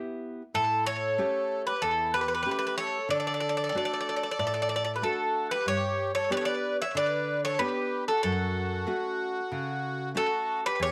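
Greek folk from a bouzouki band, sunny and hopeful in a straight 4/4, cut from a longer piece. A full-bodied, fingerpicked nylon-string guitar opens the passage alone in accompaniment before the bouzouki enters at 0.5 seconds up front with the melody, its metallic double strings and some octave-doubled courses ringing with a slapback echo, and a reedy, sweet accordion joins at 0.6 seconds on a second line, its light tremolo tuning also touched by slapback echo. Moderate spring reverb and a small room ambience frame the playing as the harmony moves from Em through A7 and D, then shifts at 5.7 seconds into a new section over G and F#m.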